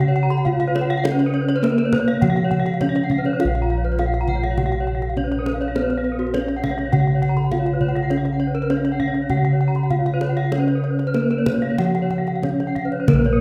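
Hypnotic and brilliant, this Balinese gamelan excerpt sets a bronze metallophone carrying the melody, struck with padded mallets for a mellow ring, over soft, round bossed gongs that sit up front in the bass. Two more metallophones weave arpeggios above: one played with a wooden mallet and touched with tape echo, the other a bright, airy horn-mallet part, their paired tuning producing shimmering beats. The kendang joins at 0.3 seconds with tight, hard-handed drumming, and a moderate recital-hall reverb surrounds the ensemble.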